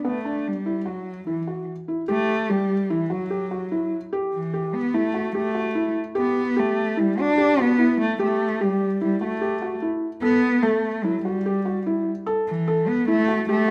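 A moderate recital-hall reverb of about 1.4 s surrounds this intimate excerpt of a contemporary instrumental piece in E minor. The mood is restless and hypnotic at 147 BPM in a straight 5/4 metre. A felt-muted upright piano plays arpeggios from the very start, with a soft, mellow, slightly boxy tone and audible action noise up front. A single bowed cello enters at 0.1 s with the melody, dark and smooth on top, played sul tasto with vibrato and a gentle attack, and it sits a little louder than the piano. The harmony moves from a rootless Bm to Emadd9 at 2.1 s and arrives on A5 at 10.2 s, with both instruments continuing to the end.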